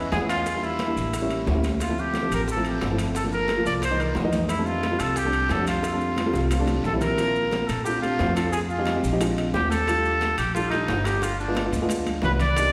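Afro-Cuban jazz at a danceable 178 BPM in F major, moving to Bb major at 7.2 s. Throughout, a soft-attacked, roomy trumpet carries the sophisticated melody up front over a dark grand piano with audible action noise, a woody pizzicato upright bass, high-tuned congas, tight bongos, ringing metal-shell timbales, raspy guiro and grainy maracas, all bathed in a church-like reverb, with drum fills at 5.8 s and 11.7 s in this short cut from a longer piece.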